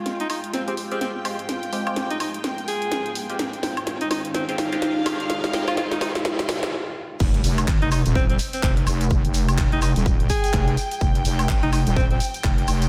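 Swung sixteenths drive this swaggering, gritty bass house excerpt, where a bright alto saxophone with vibrato and analog delay leads over dark bowed strings, a moody chorused analog pad, a nasal band-passed chord stab under a filter sweep, a very quiet riser and impact, and a house drum kit with a cracking snare filling through the build-up, until a stop at 6.7 seconds gives way to a drop at 7.2 seconds, where a heavy, saturated wobble bass, a punchy electronic kick and a grainy shekere arrive in a dreamy, reverb-soaked hall.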